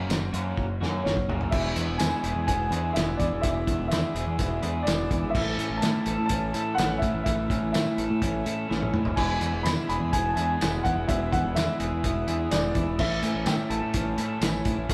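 A stone room's moderate reverb frames this cool, bittersweet indie rock excerpt at 126 BPM, where a muffled, cloth-damped drum kit with a fat snare sits up front, fills at 0.6 and 8.7 seconds, beside a growling overdriven bass, a scooped clean guitar riff and a crunchy overdriven one, while a dark, woody upright piano enters at 1.0 seconds with the melody and a soft, bell-like glockenspiel traces a second line behind it over chords moving from F# through E7 and A.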